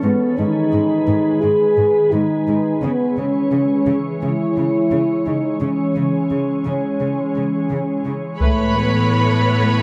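Cinematic hybrid orchestral and electronic film score in C# minor at 86 BPM, futuristic and tense, where a dark, up-front French horn section holds sustained chords over a glassy, warbling FM pad and a rich, soft-attack cello bass through G#m and C#m before, at 8.4 seconds, a smooth violin line, a distant viola accompaniment and a hard-stick, saturated taiko ensemble arrive on an Aadd9 chord, all set in a moderate scoring-stage reverb with close, detailed microphones.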